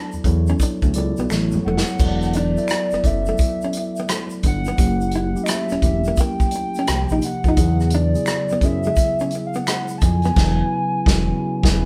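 A smooth, sawtooth-edged synth bass sits up front in this short neo-soul R&B excerpt, its sustained, vibrato-tinged notes carrying a ring-modulated glow under a relaxed, swung 4/4 groove. An acoustic drum kit played with bundle sticks sounds distant and roomy yet punchy in the kick, with dark cymbals, rim clicks and toms, and a fill from 1.3 to 2.0 seconds leads into the longer second section. Over mellow tine electric piano chords heard through its built-in speakers, a hollow, woody clarinet-like synth lead sings the melody with chorus, phaser and gentle vibrato. A dark, compressed hollow-body archtop guitar adds a clean picked second line until 10.3 seconds, while a tube shaker, group handclaps and finger snaps sit softly in the background. Extended chords such as E9sus4, F#7b9 and E13 give the smooth, warm mood its color, and the band closes on an accent from 10.4 seconds in a lightly reverberant live-room sound.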